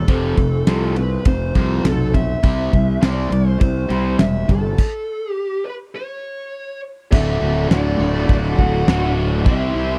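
A straight 4/4 groove at 102 BPM drives this confident, sunny classic rock excerpt in D mixolydian, tuned slightly flat to A4 = 436 Hz. A damped 70s drum kit sits up front with a fat snare, tight kick and dark crash and ride cymbals, beside a growly, punchy fuzz bass played with the fingers. Two overdriven riff guitars fill the background, a cranked stack and a bright semi-hollow body with phaser, while a fuzz lead guitar with wah carries the compressed, dark melody over a very quiet tonewheel organ holding chords through a slow rotary speaker with key click. The band moves from F to C, then hits a stop at 4.8 seconds before landing on D at 7.1 seconds, where a bluesy distorted second lead and a double-tracked hollow-body guitar join in. The sound is dry and close, a 1970s-style studio capture with light reverb.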